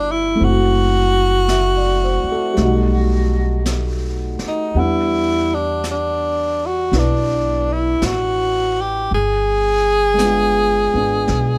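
A breathy, close-miked tenor saxophone carries a tender, romantic melody up front with vibrato, subtone and scooped notes in this slow 55 BPM swung jazz ballad, over a dark, mellow baby grand piano with long sustain, a woody, thumpy pizzicato upright bass, and a distant, roomy brush kit with a rolled-off top that enters at 0.4 s, as the harmony moves through F#m7b5, B7b13, Em9 and G7b9 in a dry space.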